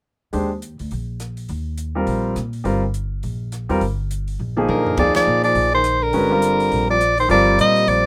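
Open and spiritual, this modal jazz piece cut from a longer work swings briskly at 207 BPM in Eb major: a clear, present baby grand piano accompanies over a woody pizzicato upright bass and an airy drum kit with dark cymbals and a boomy kick, until a drum fill at 4.4 seconds ushers in an up-front, smooth-topped soprano saxophone melody at 4.7 seconds, joined by a distant, whispered trombone second line, with a band accent at 5.1 seconds, heard through a rough home-demo mix with light reverb.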